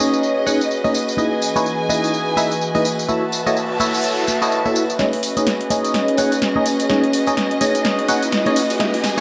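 Piano house at 126 BPM in C# minor with a swung, bittersweet and energetic feel, led by a biting, up-front FM electric piano riff coated in phaser, cassette-tape grit and dub echo, over dark, woody bowed violin chords, an airy, breathy chorused pad, a punchy house drum kit with tape-warm hats, and close, ringing tambourine and congas, while a background noise sweep and riser arrives at 3.3 seconds before a build-up with a drum fill and a filter sweep on the electric piano takes over from 5.0 seconds.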